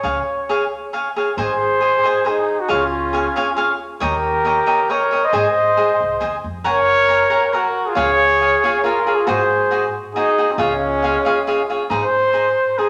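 A mellow, up-front trumpet carries the romantic, proud melody of this mariachi folk piece in three, played in a classical style with light vibrato and a smooth top. A clear second trumpet, also with light vibrato, joins at 1.4 s with its own line. Alongside them, a crisp, picked cavaquinho sits close in the mix, and a woody, thumpy pizzicato upright bass anchors the low end, all set in a wet, large studio reverb in this short cut from a longer piece.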